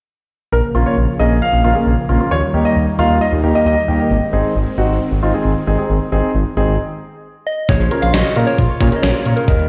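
Driving, nocturnal synth-pop in Bb minor at 134 BPM: a smooth, saturated synth bass, a warm grand piano accompaniment with short sustain, a polished baby grand second line with analog delay, and mellow vintage string-machine violas holding chorused chords move through Bbm, Eb and Ab. During a brief stop, a round, warbling FM synth lead with chorus and tremolo enters, and at 7.7 s an overdriven, thumpy 80s drum machine with a gated-reverb snare arrives alongside crisp, ringing fingerpicked kora arpeggios. A lush hall reverb and the sound of a big system playing in a bare room frame the whole mix.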